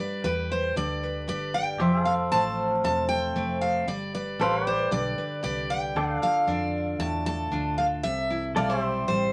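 A bright, up-front picked dreadnought acoustic guitar with fresh strings carries the melody in this short, down-home honky-tonk and classic country excerpt, which moves at 116 BPM in a straight 4/4. A second picked acoustic guitar, bright and full-bodied, fills in the accompaniment beneath it, while a vintage foam-muted fingered electric bass adds a dark, round and punchy low end. At 1.8 seconds a pedal steel guitar enters with clean, compressed sustained chords, played with fingerpicks and slide, its volume swells lending a nostalgic glow. The harmony drifts from G through F, Gadd9 and Dmadd9 before settling on C6. A wet studio reverb and a layer of vinyl crackle give the whole piece a well-worn, old-record feel.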